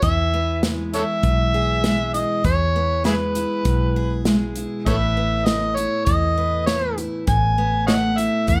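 A gritty, overdriven harmonica carries the melody up front, with light vibrato and tongue slaps, over a bright, boxy picked acoustic guitar with audible finger squeak, a dark, round foam-muted electric bass and an airy country drum kit with a punchy kick, in an easygoing, heartfelt honky-tonk excerpt that moves from E to Asus2 at 4.9 seconds within a moderate studio reverb.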